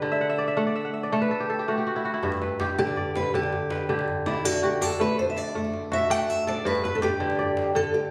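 A ringing, crisp kora opens this flowing West African string piece in G major at 108 BPM in a straight 12/8 with a fingerpicked arpeggio fill, joined at 2.2 seconds by a tight, cracking djembe that sits distant in a large room and at 2.8 seconds by an up-front, warm fingerpicked steel-string acoustic guitar soloing over G and D chords, all captured on a phone in the room with light reverb and compression in this excerpt cut from a longer piece.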